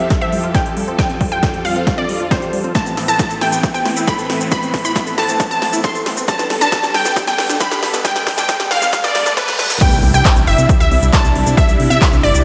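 A bright, detuned unison pluck carries the melody up front with 12-bit sampler grit and analog delay in this soaring, bittersweet uplifting trance passage at 136 BPM. Beneath it, a phased supersaw swell of sustained chords and a tight chorused sequenced arpeggio pump along with the lead, joined by a punchy overdriven kick and a big-room kit of crisp hats, claps, shaker, snare and crash. Everything sits in a lush hall reverb as a very quiet riser and reverse cymbal build to a drop at 9.8 seconds, where a punchy tube-saturated analog bass and a dark, intimate grand piano with audible action noise join.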